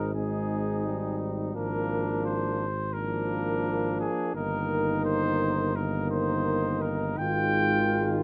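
Classical brass quintet music, triumphant and stately, in which a warm, vintage-toned trumpet carries the melody up front over a distant, roomy flugelhorn second line with vibrato, while a soft-attacked French horn and a clear, present trombone accompany in the background and a mellow, close-miked tuba anchors the bass, the five parts sounding together throughout this 8.2-second fragment of a longer piece, captured with close, detailed microphones and light reverb.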